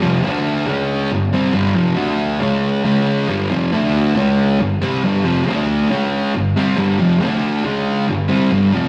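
A fuzz-drenched electric guitar plays on its own, driving a swaggering, raw rock figure at 138 BPM in a straight 4/4. The picked, double-tracked guitar sits up front, its distortion thick and warm as it cycles through D5, C#5 and G5 again and again. The part stays in a low-to-middle register, from F2 up to D4. A wet stone-room reverb hangs behind the playing, and the rough rehearsal-room recording adds a warm, saturated glow. This brief fragment, cut from a longer piece, runs just under 9 seconds with the guitar carrying everything alone.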